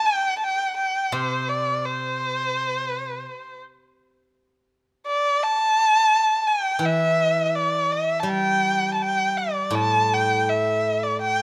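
Festive yet graceful, this short excerpt of Chinese traditional chamber music unfolds at a loose, rubato 84 BPM in 4/4, tuned slightly low with A4 at 435 Hz. A single bowed erhu carries the melody from the very start, its warm, expressive tone shaped by vibrato and sliding portamento between notes in the range of C5 to A5. At 1.1 seconds a steel-string zither enters as accompaniment, played with fingerpicks in its lower register, from A2 to G3, with a silvery, ringing acoustic sound. Both instruments sit up front, though the erhu clearly leads while the zither stays further beneath it. Close, detailed microphones and light reverb frame the pair intimately until the passage breaks off at 11.4 seconds.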